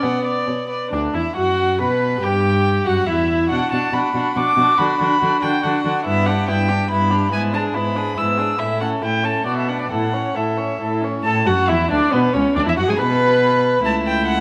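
Quick classical-period string quartet movement in triple time, cheerful and spirited, cut from a longer piece, in which two dark, nasal period-style violins carry the melody and a second line, a reedy gut-strung viola fills in the accompaniment, and an up-front cello anchors the bass, all bowed by single players in a reverberant recital hall.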